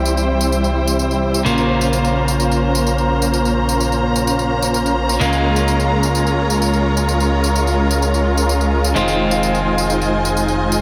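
Light reverb gives this festival progressive house excerpt a polished, spacious sheen, and the mood is emotional and anthemic at 128 BPM in a straight 4/4, tuned to A4 = 444 Hz. Up front sits a huge, euphoric supersaw lead: a bright, compressed unison of detuned sawtooth voices with a fast attack, playing a sustained riff through a low-pass filter and delay. Beneath it, a fat analog bass adds thick, detuned sawtooth weight with a filter sweep. An electric guitar at the edge of break-up picks a slightly gritty accompaniment through delay, while a studio string section holds smooth, focused bowed chords with vibrato, softened by a low-pass filter. A layered, electronic-sounding tambourine enters at 0.1 s, and the chords move from C to Bbmadd9, Db6 and Fm7 across the 10.8-second cut.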